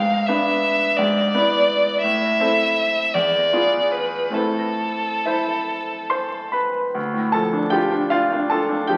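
Romantic classical music for violin and grand piano in a rubato 6/8, yearning and elegiac, where a rich, focused solo violin sings the bowed, vibrato-laden melody up front until 6.5 s while the bright, brilliant piano carries the accompaniment with short-sustained chords into a new section at 6.9 s, all heard through a wet recital-hall reverb and the crackle of a very old 78 rpm record in this fragment cut from a longer piece.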